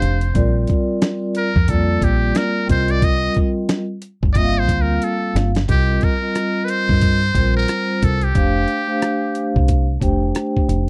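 Jazz-hop with a smoky, cool mood at 90 BPM in a swung 4/4 and C dorian, where a buzzy, breathy trumpet with a metal mute and slapback echo solos up front until 5.7 seconds and carries on to 9.6 seconds over mellow soft-mallet vibraphone with slow motor vibrato, a dark, round fingered electric bass, and a gritty, compressed sampler-style drum kit of thumpy kick, snare, hi-hat and rim click that plays a fill from 5.0 seconds, captured as a dry, close 1970s-style studio recording cut from a longer piece.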